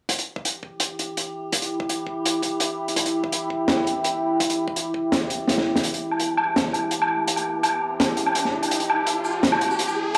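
Dry, gritty small-room sound with light reverb frames this dark, spacious half-time drum and bass, taken from a longer piece, at 167 BPM in E minor over an Em chord. An up-front, saturated breakbeat kit with a high-tuned snare, hi-hat, shaker and woodblock drives it alongside a knocking, high-pass-filtered electronic kick. A metallic, eerie FM drone hovers in the background, and a moody, detuned analog pad with chorus and sidechain pumping enters at 1.0 seconds; the kick drops out before a drum fill, then a build-up begins at 5.8 seconds as a very quiet, rumbling detuned saw bass joins on E1, with a background riser entering at 6.9 seconds.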